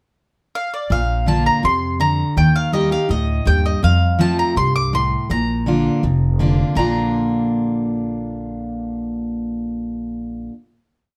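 A bright, picked mandolin opens this short, lively bluegrass piece alone with a pickup. At 0.9 seconds it is joined by an up-front, full-bodied jumbo acoustic guitar playing alternating bass and strum with bass runs, and a woody, growly upright bass laying down a two-beat root-and-fifth line with walk-ups. The mandolin's motif-based melody, carrying a touch of plate reverb, moves through a rustic progression in a moderately reverberant studio before the trio settles on a final chord from 6.8 seconds.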